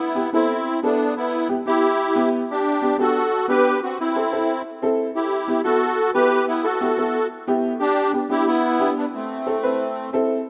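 Latin dance music at 180 BPM in a sunny, danceable mood, this brief cut from a longer piece sets a reedy, shimmering musette accordion up front, close-miked and dry, carrying the melody over a woody, slightly detuned upright piano with a boxy tone and long sustain, all through chords of Em, G and Am in a rough home demo mix with a lush hall reverb.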